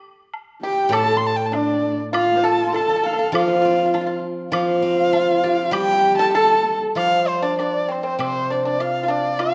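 The rhythm moves freely in a rubato 2/4, with a close, dry woodblock tapping in at 0.3 s just ahead of the rest of the ensemble in this graceful, tender fragment of Chinese traditional chamber music. A single bowed erhu carries the melody up front, its nasal, woody voice shaped by vibrato and portamento. Beneath it a husky horsehead fiddle sings a second line with its own vibrato and sliding pitch until it drops out at 6.8 s. An airy bamboo xiao hovers distant and very quiet, while a dry, percussive pipa and a silvery, ringing steel-string zither, both played with fingerpicks, fill out the texture, the zither supplying the accompaniment. The music turns to a new section at 7.0 s, all of it set in the lingering reverb of a recital hall with a dark, warm production.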